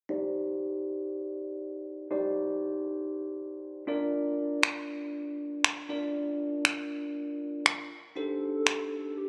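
A bell-like tine electric piano, bright and up front through a phaser and low-pass filter, opens this driving, confident dance-pop excerpt at 119 BPM in C dorian, moving from Cmadd9 to Bb, before tape-warm electronic finger snaps enter at 4.6 s and a hollow, woody clarinet-like synth lead with chorus and vibrato takes the melody at 8.2 s as the harmony returns to Cmadd9, the whole captured on a phone in a room with club reverb and compression.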